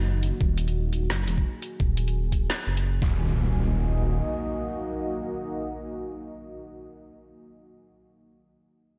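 A deep, rumbling detuned saw bass sits up front in this short, tense slice of half-time drum and bass, holding low on Eb minor at 172 BPM with a swung sixteenth feel before dropping out at 4.2 seconds. Beneath and around it, a moody ambient pad built from detuned sawtooth voices with a sub octave sustains chords through a warbling chorus and its own reverb, pumping with sidechain compression while a filter sweep moves across it during the opening 3.2 seconds. A layered kit of woody snare and bright hi-hats comes in at 0.2 seconds, joined at 0.4 seconds by an overdriven, knocking electronic kick, both sharing a small-room ambience and falling away before the second section. From 3.0 seconds an electronic impact carries the cinematic atmosphere to the close, outlasting the mellow, vintage-toned pad as it fades at 6.7 seconds in a light digital reverb.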